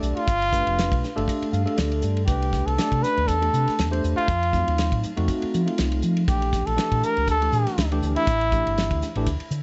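Lightly reverberant and rolled off above 7.9 kHz, this slick, soaring stretch of electric jazz fusion cut from a longer piece moves at 120 BPM in 4/4 with a 16th-note swing, in G mixolydian tuned to A4 = 438 Hz. A mellow, breathy trumpet leads up front from 0.2 seconds with light vibrato, soft attacks, scooped notes and tape echo, sounding whispered and intimate. Beneath it, a clean tine electric piano through its built-in speakers adds subtle chorus and a fill at 1.3 seconds, a round, amped fingered bass sits low, and a dry 70s kit with dark cymbals, fat snare and tight kick keeps time as the changes move from G9 through C6, F7b9 and Bbmaj7 to A7sus4.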